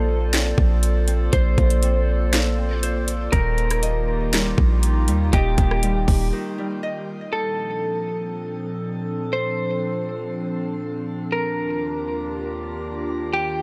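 Blissful and floating, this atmospheric cloud-rap excerpt in half-time sets a slightly broken-up electric guitar melody and a ringing, fingerpicked Celtic harp in the background over a warbling, lo-fi tape-like pad that pumps with the beat, while a boomy 808-style bass and a trap kit with hard-clipped kick, sharp snare and metallic hats sit up front until a break at 6.3 seconds leaves guitar, harp and pad floating in light digital ambience.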